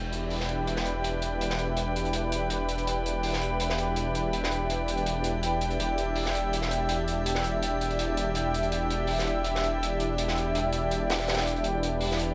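This atmospheric, nostalgic drum and bass cut, leaning toward jungle, opens on a lush unison pad holding sustained chords over a detuned saw bass pinned to a low E. Taken from a longer piece, it moves at 164 BPM in 4/4 with a straight feel in E minor, resting on a single Em7 chord throughout. The pad is thick and bright, with a slow attack and long release colored by chorus. The bass sounds beating and menacing, saturated and up front. From 0.1 seconds a crunchy breakbeat kit of hi-hat and medium-tuned snare joins, gritty and mid-forward, with a rolled-off top and high-pass filtering on the hats, snare and room. A glassy texture of drifting overtones sits in the background, calm under its own chorus and reverb, and a moderate hall reverb with a 1.9-second decay lends the mix a spacious depth.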